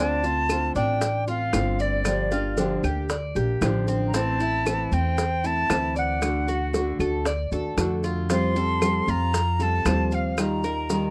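From the first moment, a bright, airy concert flute carries the melody up front with vibrato and tongued notes, over fingerpicked classical nylon-string guitar, the metallic double strings of a picked Cuban tres playing arpeggios, and a dark, thumpy pizzicato upright bass on gut strings. This nostalgic, sultry Cuban son and guajira piece, cut from a longer work, moves at 115 BPM in a straight 4/4. Grainy, mellow maracas join at 0.2 seconds, and tight, high-tuned bongos with a vintage, band-limited tone and woody claves sitting in the background follow at 0.5 seconds. The harmony drifts through Dm7, Gm7, Am and D before turning to Fadd9 and Ebadd9, giving the passage a wistful colour. The sound is dry and close, with little reverb, in the manner of a 1970s studio recording.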